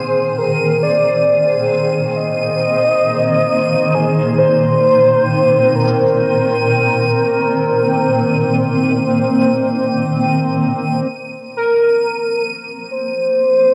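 A velvety synth lead carries the melody through this short ambient fragment in free time, its detuned, chorused tone coloured by gentle vibrato, cassette tape grit and tape echo. Alongside it, a granular cloud pad sits up front with blurred, evolving sustained chords spanning low to high, washed in its own built-in reverb. Far quieter, a reversed, detuned texture swells high above in a bright, dreamy shimmer. All three parts play throughout, and the harmony rests on Abadd9/Bb before settling onto Bbsus2 at 11.1 seconds. The home cassette recording sits in a wet spring reverb, giving the whole a weightless, luminous haze.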